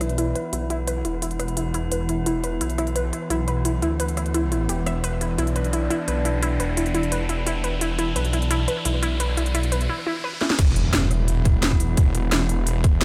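Futuristic and mechanical, this dark technical drum and bass excerpt at 173 BPM builds over an eerie, nasal FM drone with sidechain pumping, a lo-fi detuned pluck arpeggio with chorus and delay, a snarling, growling distorted saw bass, a tape-warm kit of cracking snare and crisp hats, and a riser, before a drum fill at 10.4 seconds tips into a drop at 10.6 seconds where a tight, overdriven electronic kick arrives up front alongside an impact.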